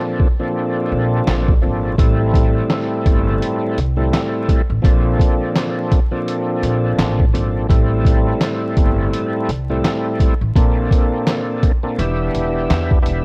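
Gritty and dark, this short boom-bap hip-hop cut sits in a swung, head-nodding groove that feels pulled from a longer track. An overdriven tonewheel organ opens alone, thick and full with key click, chorus vibrato and a slow rotary speaker, its filtered tone sitting up front as it moves between major-seventh and minor-seventh chords. A lo-fi sampler-style drum kit arrives at 0.2 seconds, compressed, pitched down and muffled, with a thumpy kick, a medium-tuned snare, hi-hat and handclaps that sound re-recorded in a small room. An upright bass joins at 0.9 seconds, plucked on gut strings with a woody, dark low end. The whole recording is dry and close, coated in worn cassette tape warble, vinyl crackle and drifting pitch that deepen its dusty character.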